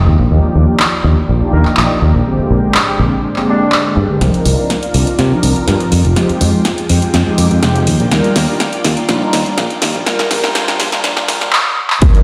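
A bright, growly fingered electric bass anchors this nostalgic, sensual filtered disco house excerpt at 123 BPM, pumping beneath round, detuned synth brass and a lush string machine with vintage 12-bit grit, while an analog drum machine of handclaps, hi-hat and snare enters at 0.8 s, a brilliant horn section sings a dub-echoed melody from 1.5 to 4.0 s, filter sweeps and a drum fill drive a build-up through Cm11, Fm9, Ebmaj9 and Bb6/9 chords, and a layered electronic kick lands at 12.0 s inside a stone-room echo chamber ambience.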